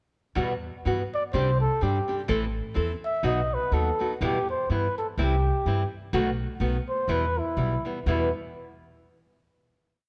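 Mariachi-tinged Mexican folk in a passionate, dramatic mood, opening at 0.4 seconds with a small, up-front nylon-string guitar fingerpicking and chop-strumming open chord shapes, finger squeaks audible, over a woody, thumpy gut-string upright bass played pizzicato on roots and fifths, until a dark solo trumpet with light vibrato and a smooth top enters at 1.1 seconds with a classical, motif-based melody in sentence phrases, carried by a slight, rubato swing under light reverb before a final chord at 8.1 seconds.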